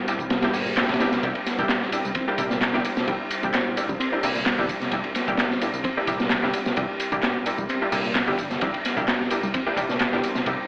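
A saturated, punchy breakbeat kit with dark cymbals leads this energetic, playful 130 BPM breakbeat piece in C mixolydian, its kick dropping out from 0.3 to 1.2 seconds, while a layered electronic house kit adds handclaps, ride and tambourine, bold detuned orchestra-hit-style synth stabs with tape echo sit up front, a reedy, worn electric piano riff with fast tremolo and a growly picked electric bass stay in the background, and a deep, moody sidechain-pumped ambient pad sustains chords underneath, all heard through a dry, gritty recording with vinyl crackle and an AM-radio tone.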